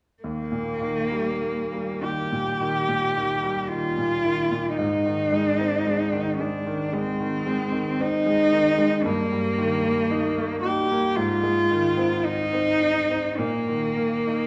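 A single bowed cello carries the melody in this serene, lyrical passage from a longer romantic work for cello and grand piano, its rich, expressive voice sitting up front with soft attacks, vibrato and gentle portamento sliding between notes. Beneath it, a bright concert grand plays accompaniment from 0.2 to 14.5 seconds, its brilliant upper notes balanced by a deep, natural bass. The music moves at an unhurried pace in four, with uneven beats and a rubato feel that lets the phrasing breathe. The harmony settles on Eb, moves to Ab and Eb/G, returns to Ab, and comes to rest on a suspended Bbsus4 chord at 13.4 seconds, leaving the phrase open. The recording is heard from further back in a recital hall whose wet reverb lends the duo an airy, spacious glow.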